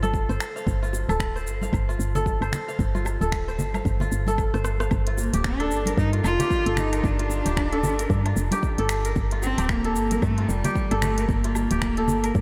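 A woody, round FM bass sits up front with sidechain pumping, anchoring this hypnotic organic downtempo fragment at 113 BPM in G minor, swung on the 16ths. Crisp, ringing fingerpicked kora arpeggios through analog delay float over a deep electronic kick, smooth-hatted afro-pop kit of finger snaps, hi-hat, rim click, shaker and woodblock, and bright congas and bongos set back in the background. After a drum fill at 4.5 s the harmony moves from F to Gm9, and at 5.2 s a single nasal, boxy bowed cello enters with vibrato and diffuse ambient delay, all bathed in a dreamy, cathedral-like reverb.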